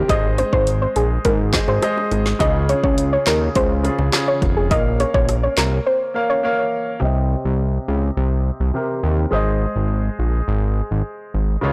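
Dancehall at 104 BPM with a bouncy, tough mood, this short cut opens with a fat, detuned analog sawtooth bass up front under a clear, natural baby grand piano and a soft, round pluck melody with chorus and digital delay that plays until 6.4 seconds over chords moving from Ab through Db and Bbm. A layered electronic deep house kit with a deep kick, woody snare, dark hats, handclaps and rim click drives the groove until the drums drop out at 5.9 seconds, joined until 5.1 seconds by tight, high-tuned bongos played with soft hands, very quiet and close. From 7.0 seconds the piano and bass carry on into a section moving from Cm to Ab as a filter sweep runs over the piano, all in a dry, blown-out, overdriven mix.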